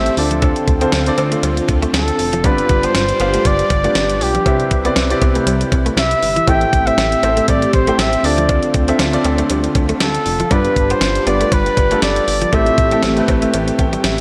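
A lightly swung 119 BPM groove in 4/4 comes from a clean 12-bit drum machine, with a thumpy kick, fat snare, hi-hat and tambourine up front, while a very quiet metallic cowbell joins at 0.4 seconds and a dark, glossy chorused synth bass anchors this moody, nostalgic 1980s-style pop excerpt. Over chords moving from Dm7 through G7, Cmaj7 and Am7, a baby grand piano accompanies and a swirling, detuned analog pad sustains phased, chorused chords in the background, and a very quiet, clean, direct-recorded electric guitar picks a compressed riff. A warm, punchy flugelhorn sings the solo melody with vibrato, delay, slapback echo and shimmer reverb until 13.3 seconds, before a piano fill at 13.5 seconds closes the excerpt inside a lush hall reverb with a big arena sound.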